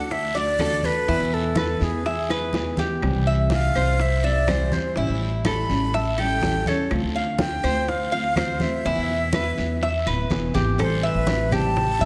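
Up front, a breathy jazz flute carries the melody with vibrato and a soft attack, leading this sultry Cuban son and guajira excerpt in A minor at 124 BPM, while a bright, metallic Cuban tres spins picked arpeggios and a full-bodied nylon-string guitar fingerpicks the accompaniment through chords such as A7, Dm7 and E. Underneath, a dark, thumpy upright bass with gut strings plays pizzicato, and low-tuned congas and raspy guiro sit in the background alongside very quiet round bongos and woody claves, with a drum fill at 2.3 seconds. A moderate concert hall reverb gives the whole a spacious sheen before the music turns to Am7 at 10.8 seconds.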